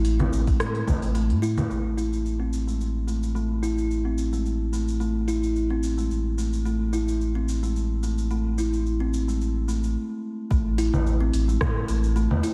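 A woody, ringing kalimba plays arpeggios up front through a low-pass filter, digital delay and slapback echo, with a filter sweep on it from 1.7 to 10.5 seconds, in this mystical, earthy organic downtempo excerpt with a light swing. A round sine sub bass pumps beneath it, while an electronic kit of congas, crisp hi-hat, rim click and shaker carries the groove. A deep electronic kick appears only briefly around 0.5 seconds and again from 10.5 seconds, just after a short stop, all within a lush hall reverb that gives a big arena sound.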